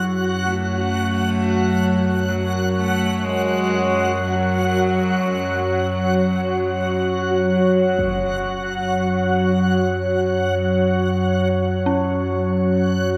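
Unsettling and ominous, this dark ambient drone drifts in free time in F# minor, cut from a longer piece. Up front, an evolving analog drone with ring modulation holds the low end, while a deep, moody pad with a sub octave fades in over the first 8.0 seconds on sustained chords, its chorus and shimmer reverb thickening the haze. Above it, a reversed, granular texture swells with a bright, dreamy sheen, and an eerie, inharmonic synth bell warbles through arpeggios in the background, trailing dub echo. A single cellist plays a bowed melody from 0.4 to 7.0 seconds, the tone nasal and biting with light vibrato and an airy, boxy, earthy edge, carried off by shimmer reverb and echo. At 8.0 seconds the harmony shifts from F#m to a bare F#5 as a huge, dark, low-pass-filtered impact lands, all within an echo-heavy mix bathed in a wet plate reverb.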